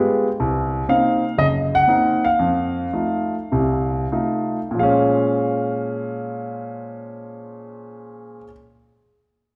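Swinging and moody, this brief fragment of solo jazz features an intimate, up-front grand piano with audible action noise and long sustain, slowing down from 0.4 to 4.8 seconds as it moves through Cm7b5 and F7 before settling on Bbm7 at 4.8 seconds, all set in a wet recital hall reverb.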